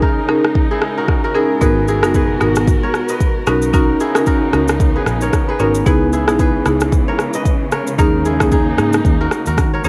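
Afrobeats with a mellow, smooth mood and a swung feel, cut from a longer piece: a woody marimba plays dark padauk-bar accompaniment, a bowed string section holds expressive sustained chords with vibrato and portamento, and a crisp fingerpicked kora rings out a riff through tape echo. An electronic, up-front drum kit with a deep kick, rim click and shaker drives the groove, and a round, punchy foam-muted electric bass joins at 1.6 s after the opening break. The drums, marimba, strings and kora carry the soft grit of cassette tape, all set in a light reverb with the cozy character of a home recording.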